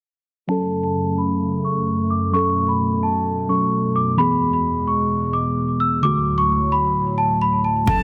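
Dark and eerie, this half-time trap excerpt at 130 BPM in F# minor opens with a bell-like celesta melody over muted, warbling felt-like synth keys and a hollow, airy pad, all filtered under a sweep from 0.5 to 7.9 seconds through F#m, E and D chords, before a deep, boomy 808-style bass, a woody cajon, a brief silver concert flute note and an electronic impact arrive together at 7.9 seconds in a small, lightly reverberant room.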